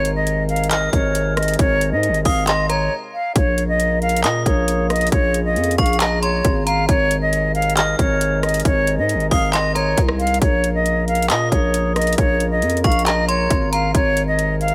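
Menacing and dark, this half-time trap excerpt at 136 BPM in Bb minor sets an airy, vibrato-laden concert flute melody with delay up front over distant, roomy French horn chords, a growling, buzzy 808-style bass and a trap kit of hard-clipped kick, metallic hi-hats, handclaps and rim clicks, while an inharmonic, ringing FM bell with chorus and delay joins at 0.7 s; a brief break at 2.9 s leads back into the Abadd9 and Bbm cycle.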